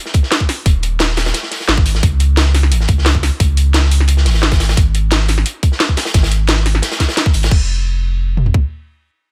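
This is a short cut from a liquid drum and bass track, dreamy and soulful, opening straight into the drop with three layered drum kits together from the first moments. An electronic, produced kit sits up front with a tight kick and toms, joined by a second electronic layer carrying a cracking snare, metallic hats and crash cymbal, both re-recorded in a small room. Underneath, a quieter acoustic breakbeat kit adds hi-hat and a medium-tuned snare with a dark, gritty, saturated character, its top rolled off and its hats, snare and room thinned with high-pass filtering. Just under a second in, a round sine sub bass arrives, deep and sustained with a fast attack, sitting prominently in the low end. The breakbeat layer and the second electronic kit stop around 7.5 seconds, leaving the kick, toms and sub bass to carry a brief closing section, all in a dry mix with little reverb.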